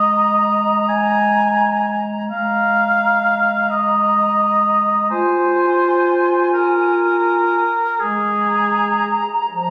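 A warm oboe sings up front with light vibrato in this moving, uplifting cinematic fragment in Ab major, a slow, rubato 6/8 at 42 BPM, alongside a dark clarinet and a pure, crisp-attacked silver flute with expressive vibrato, their lines drifting over Absus2, Fm and back to Absus2 across about 9.7 seconds, heard through moderate scoring-stage reverb in a compressed phone recording with a club-like ambience.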